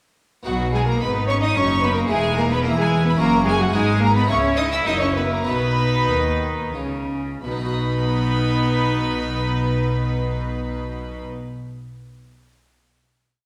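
A bright, plucked harpsichord sounds first at 0.4 s, sitting in the background with rolled chords, before the string band enters at 0.5 s in a festive, lively baroque-style concerto movement in B major and 3/4 time. The upper violin section carries the tune with a close, gut-string period tone and light vibrato. A second violin section with a smooth top and a single rich cello both double the tune at the octave. Violas fill the middle with independent inner lines and sustained chords, the cello section adds a nasal walking bass from the background, and an up-front double bass section doubles the bass line. The tempo ranges between 84 and 110 BPM and slows from 2.9 s to the end of the ritornello as the harmony moves from B through E, F#7, G#m and C#m7 to F#7 and back to B. From 7.4 s a final chord is held in the reverberant acoustic of a church or concert hall.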